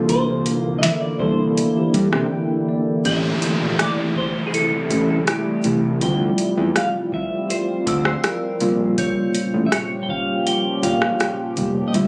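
A fat, saturated, detuned sawtooth analog bass sits up front in this smooth, tender contemporary R&B excerpt at 81 BPM, joined by a booming, dry analog drum machine with a deep kick, tonal snare, metallic hats and 12-bit sampler grit, a mellow tine electric piano heard through built-in speakers that plays a fill from 1.9 seconds running through a break, a deep, moody ambient pad pumping under sidechain with chorus and reverb, a clean, twangy picked electric guitar melody treated with phaser and tape echo, an inharmonic FM synth chime ringing in the background through ensemble chorus and tape echo, and an electronic downlifter between 3.0 and 9.0 seconds, all captured on a phone in the room with light reverb and compression.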